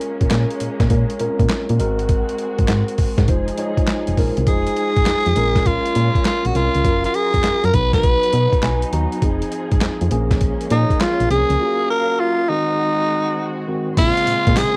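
Confident and slick, this swung new jack swing R&B cut sets a mellow tine electric piano and veiled, distant muted strings over a compressed, pitched-down boom bap kit with a thumpy kick and high-tuned snare, punchy round FM bass, and a raspy, growling tenor saxophone that takes the melody up front from 4.5 seconds, all colored by cassette-tape grit and little reverb.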